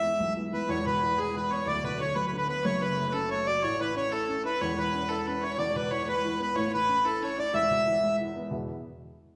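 A lively, cheerful Celtic jig in a straight 6/8 lilt, cut from a longer piece, with a reedy, mid-forward accordion up front carrying the melody and a single bowed fiddle, earthy and smooth on top with light vibrato, playing a second line. A dark, woody upright piano, mellow and close, supplies the accompaniment from deep bass up into the melody's range and carries on alone from 8.2 seconds to 8.7 seconds. The trio sits in the generous reverb of a church or concert hall.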